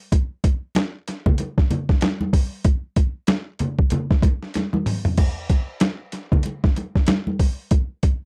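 A gritty, overdriven boom bap drum kit with a thumpy kick, medium-tuned snare, hi-hat, toms and crash sits up front in this energetic, strutting funk cut, swinging on the sixteenths beside bright, thin-skinned congas played with soft hands, all dry and close in a 1970s-style studio sound, with a drum fill at 4.5 seconds carrying the groove into a new section at 5.2 seconds.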